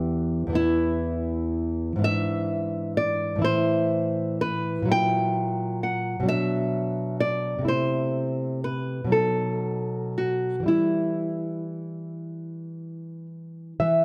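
Romantic guitar duet in E minor, tender and lyrical, moving slowly at 38-44 BPM in a rubato 6/8 and heard as an excerpt cut from a longer piece. One nylon-string guitar carries the fingerpicked melody with fresh strings and a small, close tone, while the second, thumb-plucked with audible finger squeak, supplies a warm classical accompaniment from E2 to E5, both sitting up front. Close, detailed microphones catch every touch inside a moderate recital hall reverb as the harmony passes through E7/G#, F#7/A# and B7 before settling on E minor at 10.7 seconds.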